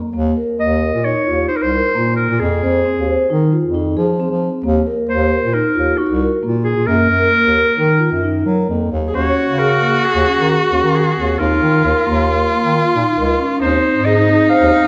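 Set in a straight 5/4 at 134 BPM, this urgent, pensive contemporary chamber piece in Eb dorian, taken from a longer work, lays mellow, ringing vibraphone arpeggios played with soft mallets over a breathy bass clarinet bass line with light vibrato, while a clear, vintage-toned clarinet carries the melody up front and a nasal, bowed viola enters with a smooth second line at 9.1 s, the ensemble heard in a wet recital hall.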